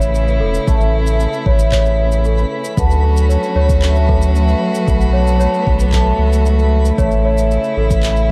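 A dry, close 1970s-style studio sound with small room ambience frames this pastoral folktronica excerpt in A major at 114 BPM, where a round, deep sine sub bass sits up front beneath a bowed string quartet holding sustained chords with vibrato and portamento through Amaj7, Dmaj7 and Bm7. A hammered, shimmering cimbalom plays arpeggios and a bell-like, delicate celesta carries a second line, both with tape echo, while a twinkling FM granular texture sparkles in the background with its own reverb. Electronic shaker and handclaps run throughout, and a produced electronic kick drum enters at 0.7 seconds and drops out at 8.0 seconds.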